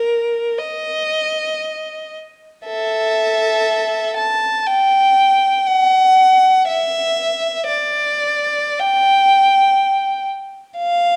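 A rich, smooth solo violin, bowed with vibrato and placed up front, sings an even, yearning line between A4 and A5 in this 11.2-second meditative classical piece, moving in a free, rubato 4/4 at roughly 46-63 BPM, set in a dark production with a lingering recital-hall reverb and cut from a longer work.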